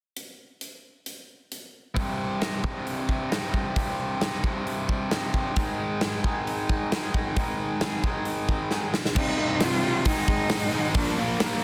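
A straight 4/4 beat from a big, up-front rock drum kit, with a tight, softly clipped kick in a bright stone room, drives this dark, angsty quiet-loud alternative rock excerpt. Within two seconds a bright, picked overdriven guitar riff arrives over a growly, punchy fuzz bass, while a clean, twangy guitar plays tremolo arpeggios in the background through a drum fill at 8.7 seconds. A very quiet, double-tracked distorted guitar slips in just before 9.2 seconds, when a rich bowed cello takes up an expressive melody with vibrato and portamento, joined by a darker overdriven guitar riff, all set in light reverb and a dense, heavily limited master.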